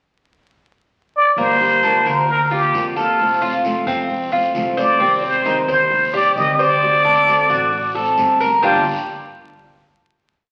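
Latin Cuban son in a guajira vein at 132 BPM in G minor, this danceable, nostalgic whole piece opens with a plunger-muted trumpet at 1.2 s playing a growling, wah-wah, jazz-style solo of song-like motifs with vibrato and scooped notes; at 1.4 s it is joined by an up-front, metallic tres picking an arpeggiated guajeo on double strings, a warm strummed steel-string guitar with muted slaps, a woody, thumpy pizzicato upright bass playing a tumbao that anticipates the chords, and a raspy guiro in the background mixing long and short strokes, as the band cycles through a Gm7–F–Cm–D7 montuno before landing on a final chord at 8.6 s, all wrapped in large studio reverb and the crackle of a very old 78 rpm record.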